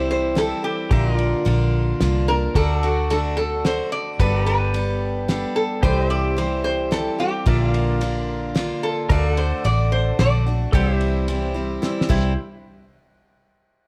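Honky-tonk and classic country in an easygoing, heartfelt 3/4 at 110 BPM, centered on C mixolydian, with an up-front lap resonator guitar carrying the nasal, metallic slide melody over a bright, full-bodied picked steel-string acoustic and a round, punchy muted electric bass. A clean pedal steel guitar holds sustained chords with volume swells, while a cloth-damped drum kit with a fat snare and dark cymbals enters at 0.4 seconds and closes with a fill at 11.8 seconds. A very quiet, woody, slightly detuned upright piano joins at 5.8 seconds, all set in light reverb with close, detailed microphones in a short cut from a longer piece.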